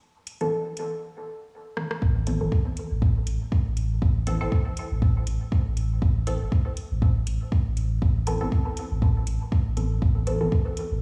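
Played through a big sound system in a bare stone room, this nocturnal, cavernous dub techno excerpt in A minor at 120 BPM opens with a tape-warm vintage rhythm box ticking metallic hats and rim clicks alongside muted, detuned sawtooth chord stabs on Amadd9 drenched in phaser, sidechain pumping and dub echo, then after a break and a drum fill at 1.8 seconds a deep, layered kick and a round triangle-and-square sub bass, pumping like the stabs, arrive up front at 2.0 seconds.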